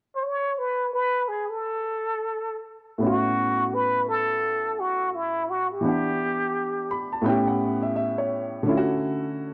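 Hip hop at 85 BPM in A major, with a swung sixteenth feel and a cool, warm mood, cut from a longer piece. A trumpet with plunger mute carries the melody from 0.2 s, breathy and whispered with wah-wah colour, vibrato and scooped notes in a jazz style. A dark, mellow grand piano enters at 3.0 s with chords moving from A69 through Em7 and A9 to Dmaj9, adding a fill from 6.6 s, while a moderate echo chamber reverb lends the recording a roomy depth.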